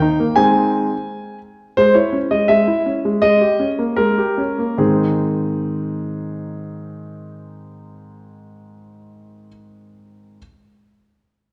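Worn, warbling cassette tape gives this recording a gently drifting pitch, and a wet recital hall reverb with a long tail surrounds it. Within that haze sits a solo concert grand piano, up front and clear, with a deep bass and a smooth, vintage tone, ranging from Ab2 to Ab5. The music is a playful, elegant classical-period sonatina in 2/4, taken with rubato. The piano slows from 1.1 to 4.8 seconds as the harmony moves from Ab through Dbm/Ab to Eb7/Ab, then returns to Ab at 4.8 seconds. This brief excerpt is cut from a longer piece, and the piano stops at 10.4 seconds.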